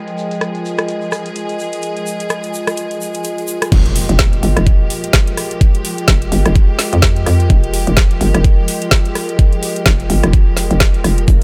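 Gritty and swaggering, this bass house passage from a longer piece opens on a clear symphonic string section holding an Fmadd9 chord alongside a warbly, nostalgic tape-like pad with chorus and its own reverb, both pumping against the sidechain while a filter sweeps across the strings. A garage drum kit with a woody snare, metallic hats, rim clicks and crash sits up front from the start, joined by a grainy tube shaker in a small room. At 3.7 seconds the drop lands with a background impact, the shaker falls away, and a layered electronic kick drives in beside a hollow, bouncy FM bass with overdrive and fast, decaying attacks. The swung sixteenth feel gives the groove a loose strut, while the strings keep a smooth, lightly vibrato top above the punchy low end. A digital ambience frames the mix, and the shaker returns briefly at 11.3 seconds before the cut.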